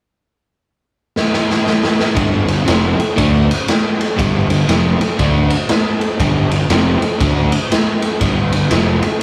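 A rough rehearsal-room recording with tube saturation and light reverb gives this short, raunchy, gritty cut of blues rock and southern rock a raw power-trio feel. The garage drum kit comes in first at 1.2 seconds with a fill of kick, snare and ride, sounding punchy and up front in a bright stone room, with a medium-tuned snare and a dark, smooth, rolled-off top. At 2.1 seconds the crunchy, double-tracked electric guitar enters with a picked, overdriven riff, and the bass follows at 2.2 seconds on a G5 chord. The fingered electric bass is growly and fuzz-laden, heard direct and amped with extra overdrive beneath the guitar. The groove sits at 119 BPM in 4/4 with a swung eighth-note feel.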